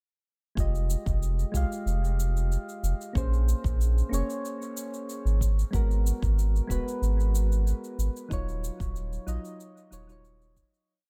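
Sunset chillout at 93 BPM in F phrygian, warm and relaxed, with a round, nasal analog bass up front playing a syncopated riff over a soft, deep electronic kick and a light cabasa lounge beat, while mellow, detuned electric-piano-like synth keys with chorus and dub echo hold chords with syncopated pushes through Fm9, Bbm9, Abm9 and Ebm9 in an echo-heavy mix that fades out from 7.5 seconds to the end at 10.9 seconds.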